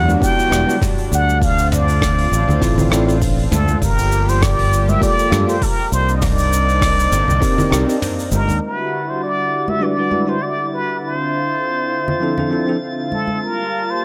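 A plunger-muted trumpet carries the melody up front, its bright wah-wah tone colored by light vibrato and an analog delay, in this wistful, lightly swung sunset chillout excerpt cut from a longer piece. Beneath it, a lush, chorused unison pad holds sustained minor-ninth chords, a bell-like tine electric piano with vintage 12-bit sampler grit and its own delay adds accompaniment, and ringing congas sit in the background. A punchy electronic kick, a soft filtered brush kit and a bright, direct fingered bass drive the opening until a brief break, after which a calm, glassy harmonics texture drifts in at 9.0 seconds, all within a dry, gritty hardware-recorded sound.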